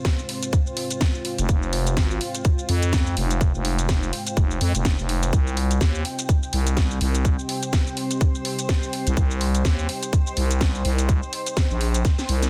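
Bass house in F minor at 125 BPM, this swaggering, gritty passage is cut from a longer piece and rides a 4/4 groove with a 57% swing on the 16ths. A tight, layered electronic kick sits up front from the start, alongside a garage drum kit whose cracking snare, shaker and bright hi-hats fill out the beat, and a drum fill arrives at 12.0 seconds. A growling FM bass enters at 1.4 seconds, thick and overdriven, with a fast attack and sustained notes that pump against the kick. Behind it, a deep, moody analog pad holds sustained chords with chorus and sidechain pumping, moving from F minor to C minor at 5.3 seconds. A granular cloud pad adds a blurred, bright haze higher up, carried by its built-in reverb and its own pumping. The dense, heavily limited modern master sits in a digital ambience.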